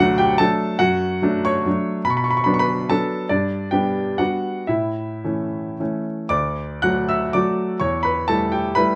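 A clear, polished baby grand piano opens alone and plays throughout this graceful, rustic romantic dance in triple time, its dotted rhythms shaped with a flexible rubato. Sitting up front with a short sustain, the piano spans from deep bass to bright upper notes. A moderate studio reverb gives it a sense of space, and a new passage begins at 6.3 seconds before this brief fragment of a longer piece cuts off at 9.0 seconds.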